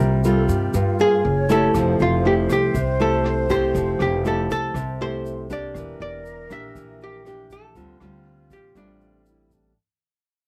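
This smooth, wistful bossa nova in D minor opens at once with a dark, clean hollow-body archtop guitar picking the melody up front, its tone coloured by cassette tape. Beside it sit a full-bodied, fingerpicked classical nylon-string guitar playing the accompaniment and a woody, thumpy pizzicato upright bass on gut strings. Moments later a small, breathy flute group adds a mellow, straight-toned second line with tongued, slightly unsteady notes, while a grainy, bright egg shaker stays in the background. At 1.7 seconds a vintage brush drum kit enters behind the others at a straight 120 BPM in 4/4, its rolled-off, cassette-tinged sound carrying hi-hat, rim click and a punchy kick. The harmony moves from C7sus4 through F#maj9, Fmaj9 and Em7b5 to Dm7. The home cassette recording has a light reverb and fades out throughout this short cut from a longer piece.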